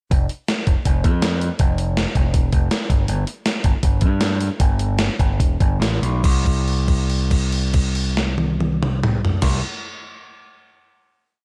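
Upbeat and carefree, this short indie rock piece in C major moves in a straight 4/4 at 139 to 162 BPM. A gated 80s digital drum machine drives it with a sampler-style electronic sound: a thumpy kick, a gated reverb snare, hi-hat, crash cymbal and toms, all set up front in a big rock groove. A growling picked electric bass sits just as far forward, direct and amped with overdrive, holding down the low end between E1 and G2 and locked to the kick drum. The opening pre-chorus slows down from 3.1 seconds, easing the momentum before the final held note arrives at 6.2 seconds and rings until about 9.4 seconds. Light reverb gives the whole recording a touch of space.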